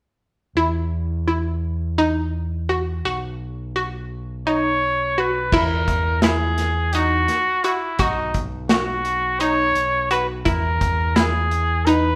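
Progressive instrumental band music in 7/8 at 170 BPM (eighths), driving and intricate, in E lydian, cut from a longer piece and played live in one room with a moderate large studio reverb. A bright, chorused analog pluck with ring modulation and a filter sweep spins arpeggios over a round, overdriven fingered electric bass from 0.6 s, moving through Esus2 and B before a clear, punchy trumpet with vibrato takes a forceful solo melody at 4.5 s. At 5.5 s a dark modern studio drum kit with a tight kick, medium-tuned snare, hi-hat and crash enters as the harmony shifts between Emaj7 and B.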